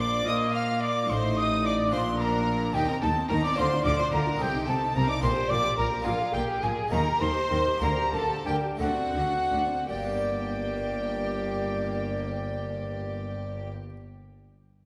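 A bright, airy wooden baroque flute leads this dramatic, driving concerto-style fragment in 6/8. It shares the melody with a close, gut-strung violin section while a second, smoother violin section, distant dark violas and a dry, brilliant harpsichord in the background fill in. Rich double basses and reedy cellos anchor the bass, and the ensemble broadens between 5.2 and 9.9 seconds before a new section begins in a wet, resonant hall.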